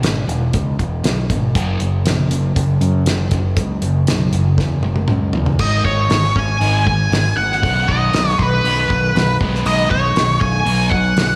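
Swaggering and driving, this straight-feel classic rock clip pairs a sludgy, double-tracked overdriven guitar riff with a bright, growling fingered electric bass and a dry, damped 70s drum kit with a fat snare and tight kick; the drums play a fill from 4.6 s before a dark, up-front octave-fuzz lead guitar with wah, distortion and slapback echo takes the melody at 5.6 s, inside a lush hall reverb that gives a big arena sound.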